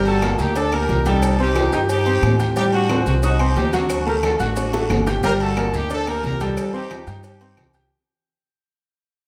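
Passionate and danceable, this salsa cut pairs a clear, punchy horn section with a light vibrato carrying the melody over a brilliant upright piano with audible action noise and a woody pizzicato upright bass up front, while ringing low-tuned congas, metal-shelled agogo bells and timbales, tight high-tuned cowbell and bongos, dry claves, raspy guiro and grainy maracas sit further back in a large studio reverb, with a drum fill at 4.6 seconds leading into a fade-out from 5.2 seconds.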